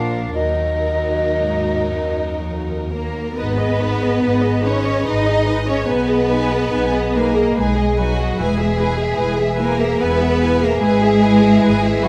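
A slow, elegiac romantic movement for symphony orchestra in a flexible triple time, cut from a longer piece, where a smooth, vibrato-laden violin section carries the melody over a lush, expressive second violin line, intimate dark violas, and focused cellos and double basses below. A pure, distant concert flute adds a brief second line until 2.4 s, and from 3.4 s a roomy French horn section sustains solemn chords in the background. Close, detailed microphones and light reverb keep the bowed strings present and intimate.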